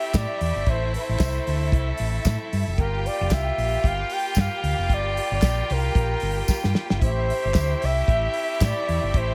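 Driving and glamorous, this short disco fragment sets a breathy, scooped flugelhorn melody with slapback echo over a lush bowed violin line and distant, nasal muted French horn chords, while a round, up-front hollow-body bass, a dry 70s drum kit with handclaps and a fill at 6.5 seconds, and a jingly tambourine push the groove from Am7 to Gm7 and back in a small room.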